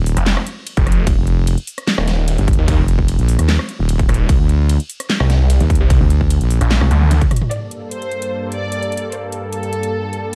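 Menacing and aggressive, this heavy wobble dubstep cut opens on a half-time drop where a saturated wobble bass and a growling, detuned saw bass with distortion sit up front over a punchy, overdriven electronic kick and a dubstep drum kit with a huge snare, metallic hats, handclaps, ride, rim clicks and toms, ending with a drum fill at 6.7 seconds. At 7.5 seconds the basses and kick give way to a lush symphonic violin section with vibrato and tape echo, carried on an evolving, slow-attack supersaw pad that pumps against the sidechain while the drum kit plays on. The production is dark, with a digital ambience.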